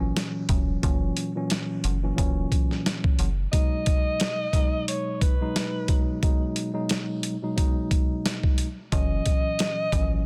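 A breathy, whispered tenor saxophone enters at 3.5 seconds with an intimate, vibrato-tinged jazz solo over a dark, gritty boom-bap hip-hop groove at 89 BPM in G# minor, where a pitched-down, compressed sampler-style drum kit with a thumpy kick and tape-warm grain sits up front, a mellow tine electric piano plays clean chords moving from F#7 to G#m7, and a metallic FM bass with a fast attack and decaying notes sounds at the start, falls silent when the saxophone arrives, and returns at 8.9 seconds, captured dry in a dense, heavily limited modern master cut from a longer piece.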